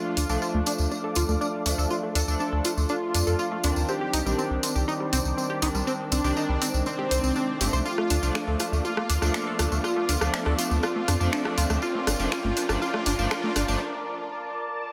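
Lightly reverberant and hypnotic, this melodic techno build-up rides on a rumbling, detuned saw bass up front, with an overdriven drum kit of finger snaps, hi-hat and rim click alongside a jingly, compressed tambourine. A tight, nasal sequenced synth plays arpeggios through dub echo, an edgy sync-sweep polysynth adds warbling stabs with tremolo, and a smooth soft supersaw carries the melody through analog chorus and delay over a resonant pad in the background as the chords move from Dm through Cmadd9 to Gm. A riser enters at 2.5 seconds and runs until a brief break at 13.8 seconds.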